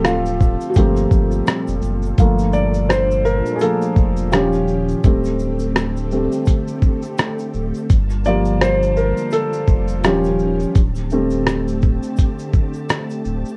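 A felt-muted upright piano carries the lead across this hazy, melancholic lo-fi hip hop excerpt, its soft, intimate tone sitting up front with audible action noise and a cassette-tape character. Beneath it, a dusty sampler-style drum kit of thumpy kick, hi-hat, rim click and shaker sounds gritty and compressed, as if re-recorded in a small room, and rolls with a swung 16th-note feel. A round sine sub bass holds the low end until 13.4 seconds, while a vintage string machine voiced as violas adds sustained sawtooth chords with a soft attack, a moving notch and ensemble chorus. A grainy tube shaker enters at 0.1 seconds, very quiet, close and dry. The harmony drifts from Dm7 and Gm11 into a cycle of Gm9, Eb9 and D7sus4, and the whole mix wears light reverb and worn, warbling old tape with pitch drift.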